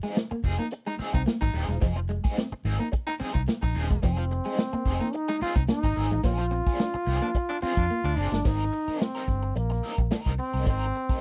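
Cool and driving, this short funk cut in F dorian moves at 109 BPM over a swinging big-band drum kit with a punchy kick and a round, foam-muted vintage bass, while a crunchy overdriven guitar with wah and tremolo and a slightly broken-up guitar riff drenched in lush chorus sit beneath a raspy baritone saxophone line and a bright, forceful trombone melody that enters at 4.0 seconds, all in a dry, close 1970s-style studio sound, with a drum fill at 7.9 seconds carrying the chords from Fm7 and Bb9 into Abmaj9.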